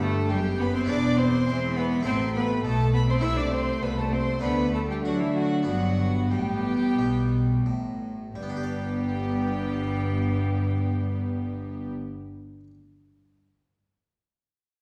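In a straight 4/4 pulse between 86 and 104 BPM, this festive, lively baroque-style concerto movement in G major slows from 2.1 to 8.4 seconds, and it is tuned slightly low to A4 = 438 Hz. A single rich, reedy solo cello carries the melody, while a chamber violin section with light vibrato and gut-string tone sings a high melody above it and a second violin line moves in a lower register. Beneath them a smooth-topped viola section fills the middle, a double bass section and a distant cello section supply the bass, and a bright, plucked Flemish-style harpsichord provides accompaniment in the background. The harmony moves from G through E, A5, Am/C and D5 before settling back on G, and a brief contrasting passage follows the opening material. The whole ensemble is heard from further back in a wet recital-hall reverb, and the harpsichord rings on alone until 12.7 seconds as this cut from a longer piece closes.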